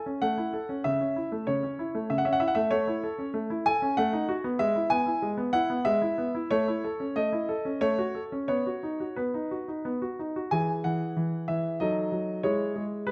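A clear, up-front grand piano fills a recital hall with moderate reverb, captured by close, detailed microphones that bring out its smooth, vintage tone and short sustain. This cheerful, elegant classical-period sonatina in E major moves in 3/4 at roughly 88-98 BPM, with a rubato feel that lets the phrasing breathe. The solo piano spans C#3 to G#5 across the whole 13.1 seconds, opening on an A chord and passing through A/C#, B7/A and E/G# before settling toward F#m/A and B. At 10.5 seconds the music turns to a new section that lands on E, then colors it with F#m6 before closing on E/G#. Cut from a longer piece, this brief passage offers a graceful, poised glimpse of the sonatina.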